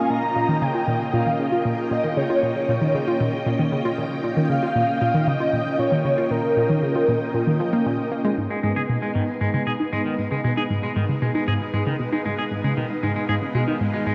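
Expansive and mysterious, this ambient, sequencer-driven space music moves at 116 BPM in a straight 4/4, opening in Bb dorian on a Bbm chord before shifting to G# dorian and G#m at 8.4 seconds, and it is cut from a longer piece. A round, detuned analog pluck carries the riff throughout, its fast attack and short decay given chorus and tape echo, while a lush vintage string machine holds sustained chords with slow attack and long release, bathed in ensemble chorus and shimmer reverb. A breathy, flute-like synth lead sings the melody with vibrato until 7.9 seconds, trailing shimmer reverb and tape echo. In the second section, a very quiet, bubbling stepped-filter texture with resonant random filter steps enters, and at 8.5 seconds a clean, twangy electric guitar picks arpeggios through a low-pass filter, shimmer reverb and tape echo, while a filter sweep moves across the synth arpeggio sound. 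The dark production sits in a wet plate reverb with a 2.6-second decay.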